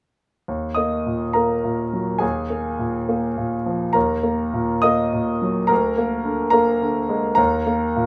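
A rubato 6/8 pulse moves at 70 BPM counted in dotted quarters, giving this short classical passage a flexible sway. It is a virtuoso piano study in a passionate, stormy mood, taken from a longer piece. A single grand piano carries everything alone from 0.5 to 8.1 seconds, ranging from D2 up to Eb6. The tone is warm and present with long sustain, placed up front in a light reverb. The harmony moves from Ebm through Bb5/Eb, back to Ebm and then Bb7/D, before settling on Eb5 at 7.4 seconds.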